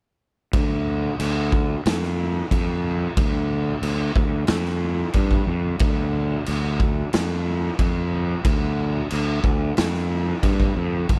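From 0.5 seconds, a growly, fuzz-drenched fingered electric bass and a raw, gritty garage drum kit start together and stay up front, driving this ominous, hypnotic stoner and doom metal excerpt in D minor at 91 BPM in a straight 4/4. The bass carries overdrive and tube saturation across its G1 to G2 range, while the drums bring a punchy kick, a medium-tuned snare and crash cymbal with a saturated, rolled-off top and a pumping stone-room sound. The mix is dry, with little reverb, and both parts play through to 11.2 seconds.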